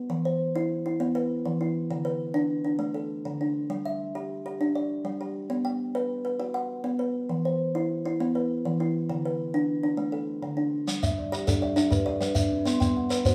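A woody, airy kalimba rings out up front in thumb-plucked arpeggios that form a rippling, warm, mbira-style interlocking cycle of southern African traditional music in 12/8, joined at 10.9 seconds by a grainy, up-front shekere and at 11.0 seconds by a second, softer and mellow fingertip-plucked kalimba, the band playing live together in a moderately reverberant large studio room in this fragment cut from a longer piece.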